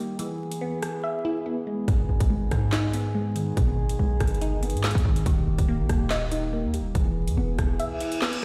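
Tense and cold, this short cut from a longer half-time drill track opens on a glassy, crystalline wavetable pluck, detuned in unison and coloured by chorus, phaser, a filter sweep and a moving notch, over a dark, distant French horn section holding sustained chords with light vibrato and a soft attack. The electronic drill kit comes in almost at once, up front with a hard-clipped kick, woody snare, metallic hi-hats, handclaps and rim clicks, but it drops away at 1.0 seconds to leave a brief break. At 1.9 seconds the drums return alongside a punchy, heavy 808-style bass, a sine tone with a noise layer, fast attack and decaying tail. The harmony moves through E, G#m, D# and back to E. Near the close the kick falls out and an electronic reverse cymbal rises in at 7.9 seconds, while the whole mix sits in a bare stone room with light reverb and vinyl crackle, as if played on a big sound system.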